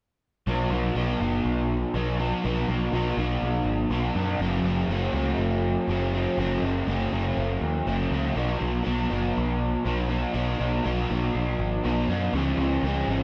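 A crunchy overdriven electric guitar sits up front, its double-tracked, picked riff bathed in a lush chorus that lends it a warm, shimmering glow. Beneath it, a growling picked electric bass adds bright, punchy weight, its direct amped tone roughened by overdrive. This short rock cut, taken from a longer piece, moves with a straight feel in 4/4, both parts playing together from 0.5 seconds to 13.2 seconds. The harmony moves from B to F# and back to B before reaching C# at 12.3 seconds. A moderate stage reverb gives the pair a spacious setting, and the mood lands somewhere between wistful and blissful.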